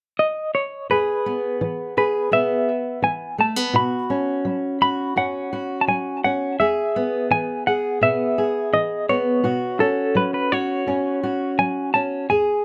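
A semi-hollow electric guitar carries the melody from the start with a clean, hollow-bodied tone shimmering through tremolo and tape echo, joined at 0.9 seconds by a fingerpicked steel-string acoustic guitar with a warm auditorium body, the harmony moving between E and Bsus2 in an uplifting, nostalgic folk excerpt that sits up front in a small room with the rough feel of a home demo.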